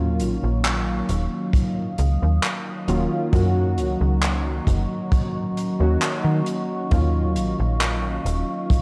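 A faded cassette-tape sound with light reverb and small-room ambience frames this nostalgic vaporwave excerpt, moving slowly at 67 BPM in 4/4 over D#m9 and F#6 chords. Up-front, warbling lo-fi synth keys carry the accompaniment with lush chorus, 12-bit sampler grit and tape echo. A dark, detuned tape-like pad sustains chords alongside them, while a snappy FM slap bass with a metallic attack anchors the low end. An airy, polished acoustic drum kit adds handclaps and hi-hat under studio and gated reverb, joined at 1.5 seconds by a punchy kick drum.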